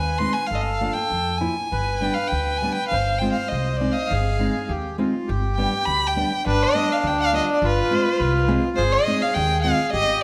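A warm, bowed violin sits up front and carries the melody, its smooth, even tone shaded with vibrato as it takes a solo through the first 6.5 seconds of this soulful, festive klezmer excerpt in G phrygian dominant. Beneath it, a reedy, airy accordion plays a second line, while an upright bass in gut strings gives a woody, dark, thumpy pizzicato foundation. A small, fingerpicked nylon-string guitar adds acoustic accompaniment from 0.2 seconds, moving over chords that return again and again to a G bass. The 2/4 pulse starts at 102 BPM with a straight feel and speeds up throughout, lending the passage a gathering dance energy. A moderate recital hall reverb surrounds the ensemble, and the piece shifts into a new section at 6.5 seconds before this cut from a longer performance ends.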